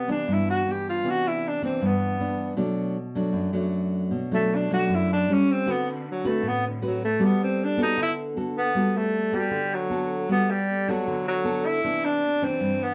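Sunny and relaxed, this bossa nova excerpt in straight 4/4 features a breathy tenor saxophone carrying the melody, its mellow subtone voice shaded with vibrato, soft attacks and scooped notes, taking a jazz-style solo through the first 8.7 seconds. A fingerpicked nylon-string guitar accompanies throughout, its fresh strings sounding warm and classical, with the occasional finger squeak, over chords moving from Cmaj9 through Bm7 to Gmaj9. A small, reverberant room places the pair a little further back, lending the whispered saxophone an intimate, distant air.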